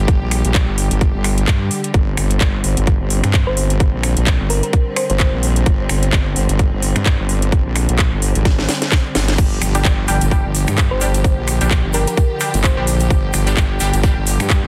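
Bass house at 129 BPM in G minor, with a 16th-note swing that gives this gritty, bouncy excerpt its lilt, built on a single G5 harmony throughout. A tight electronic kick sits up front beside a heavy, saturated wobble bass blending sawtooth and sine tones with chorus and overdrive, the bass pumping along with a lush bowed string section that holds sustained chords underneath and pumps as well. The house kit adds a cracking snare, metallic hats, handclaps, finger snaps and crash cymbal with a tape-touched, small-room character, and a drum fill at 8.5 seconds leads into a busier stretch. A round, tine-like synth pluck with chorus and dub echo plays brief melodic phrases around 3.5 and 10.9 seconds, while from 9.7 seconds a nasal, band-passed chord stab with detuned sawtooth bite joins, echoing and pumping along with the groove. A grainy egg shaker enters in the distant background at 9.4 seconds, and the whole mix is dense and heavily limited in a digital ambience.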